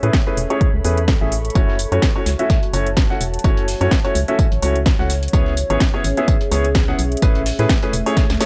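A clear, smooth concert grand piano riff opens this energetic, bittersweet piano house excerpt, filtered and touched with analog delay, over a hollow, organ-like FM bass, a house kit with cracking snare and metallic hats, and a deep, moody sawtooth pad sitting in the background with chorus and reverb; a punchy, up-front electronic kick drives the swung groove, a gritty sampler-style kit with hi-hat, snare and tambourine joins at 1.6 seconds, sidechain pumping breathes through the piano, bass and pad, and a drum fill at 8.2 seconds caps the dry, cassette-toned recording.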